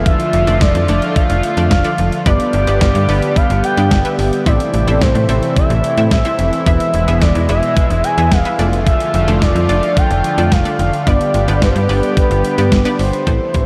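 Synth-pop at 109 BPM in 4/4 with a straight feel, nocturnal and driving, cut from a longer piece and moving through Dm/F, G, Am and E under a dreamy mix soaked in a huge ambient reverb. Up front sit a clean 12-bit drum machine, overdriven and re-recorded in a large room with a thumpy kick, medium-tuned snare and hi-hat, and a snappy, metallic FM slap bass. Around them a shimmering, retro pulse-width pad holds sustained chords, a round, detuned analog pluck with chorus plays accompaniment in the background, and a smooth, dark portamento lead with vibrato, chorus and tape echo carries the melody from 0.1 seconds.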